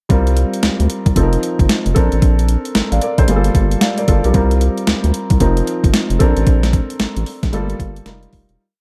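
New jack swing R&B in Bb major at 113 BPM, upbeat and flirty, built on three parts: a crisp, overdriven 8-bit drum machine with a thumpy kick driving a hard-swung beat, a round, deep synth bass bouncing through a swung funk line with muted ghost notes and chromatic approach notes, and an intimate grand piano with audible action noise holding drop2 chords dressed with grace notes and short fills over sus4 and ninth-chord changes, all three up front in a dry mix before a fade-out from 6.5 seconds.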